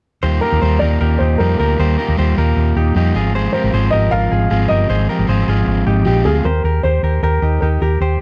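A dark, lightly reverberant production frames this bright, breezy indie pop excerpt in Eb major at 154 BPM, where a round, punchy hollow-body bass sits up front, a twangy clean electric guitar picks arpeggios through analog delay, a crunchy overdriven guitar plays picked accompaniment until 6.5 seconds, and a woody, slightly detuned upright piano with audible action noise carries the melody over Ebadd9 and Ab6 chords before the music settles on Eb.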